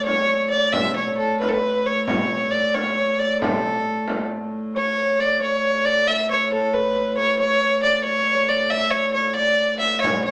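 An up-front, boxy fiddle, a single player with light vibrato, carries the melody of this festive, rustic medieval dance in 6/8, over a mellow, ringing thumb-plucked Celtic harp in the background, a close, dark hurdy-gurdy drone with an airy bow, and a small, bright frame drum that sounds distant in a large room, dropping out at 4.4 seconds and returning briefly at 10.0 seconds, all within a wet studio reverb, a faint mains hum, and a passage cut from a longer piece.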